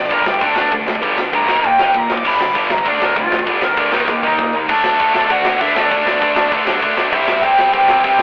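A smooth, overdriven lead guitar opens this rowdy, rebellious punk rock excerpt up front, soloing in a picked melody over the first 4.7 seconds at a brisk 197 BPM in straight 4/4. Beneath it, three guitar riffs churn in the background: two bright, distorted electric guitars, one of them very quiet, and a heavy, double-tracked high-gain guitar. A growling picked electric bass, overdriven and amped, sits low in the mix, while a tight metal drum kit enters at 0.1 seconds with a medium-tuned snare, tight kick, crash and ride cymbals and toms, its top end rolled off. A drum fill from 4.1 seconds leads into a second section where the harmony settles on D before shifting to C at 7.1 seconds. The whole recording has a rough rehearsal-room character, with tube saturation, a telephone-like filtered tone and a small room reverb.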